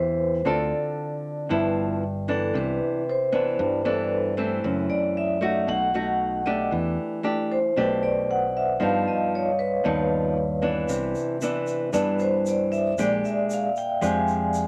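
A straight bossa nova groove in four carries this romantic, breezy excerpt, where a ringing, close-miked vibraphone with medium hard mallets and a medium motor vibrato solos throughout over up-front, fingerpicked nylon-string guitar chords moving from Dm7 through Cmaj9 and B7 to Bb6, a round, punchy fingered electric bass, and a grainy, bright tube shaker that joins at 10.9 s, inside a moderate studio reverb.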